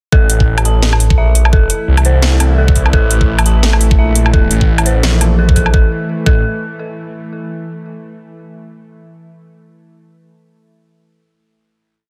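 A half-time drum and bass beat at 171 BPM with a 58% sixteenth-note swing drives this dark, spacious piece in A phrygian, where an up-front knocking electronic kick and a sparse kit of cracking snare, metallic closed hats and low woodblock sit under a thick, swirling phased saw bass playing chopped phrases, an eerie inharmonic FM bell repeats a 16-step arpeggio sequence with chorus and delay, and a tense, string-like drone pad with reverb and sidechain pumping holds sustained chords from 1.3 to 5.9 seconds, the drop running until 5.7 seconds before a final chord closes out the dense, heavily limited mix.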